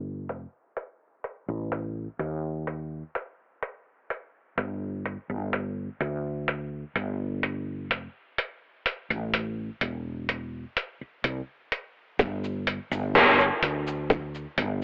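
A woody, growly fretless electric bass with tube saturation opens this hazy, nostalgic vaporwave fragment, joined at 0.3 seconds by a gated 80s digital drum machine whose cabasa, hi-hat and gated-reverb snare sound muffled and tape-softened, with a filter sweep running across the drums until 12.2 seconds. At that point a thumpy, sampler-style electronic kick drum enters up front for the closing stretch. The whole mix carries an echo-heavy, cassette-worn, telephone-like haze under light reverb.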